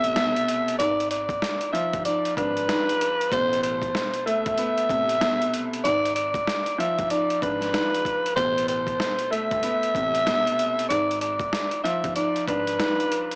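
A dry, gritty small-room recording with a cassette-tape, small-speaker character frames this tough, swung boom-bap hip-hop section cut from a longer piece. Up front, a raspy, breathy tenor saxophone growls a jazz-style solo melody with vibrato and scooped notes through tape echo, while a woody, polished upright piano carries the accompaniment over alternating Amadd9 and rootless G7b9 chords. A bright pizzicato upright bass sits in the background, and a compressed, pitched-down sampler-style drum kit supplies a thumpy kick, medium-tuned snare and hi-hat, with the bass dropping out at 12.8 seconds.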